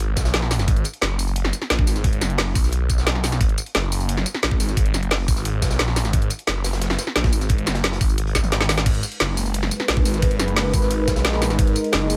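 Dark technical drum and bass at 176 BPM in G# minor, this futuristic excerpt pairs a thick, swirling detuned saw bass with phaser and overdrive against an up-front overdriven kit of woody snare, bright hats, ride, crash, tambourine and toms, a knocking electronic kick, and a very quiet, gritty breakbeat kit with a rolled-off top, all set in digital ambience, while a drum fill at 8.3 seconds leads to an evolving, chorused resonant pad that enters at 8.9 seconds with sidechain pumping.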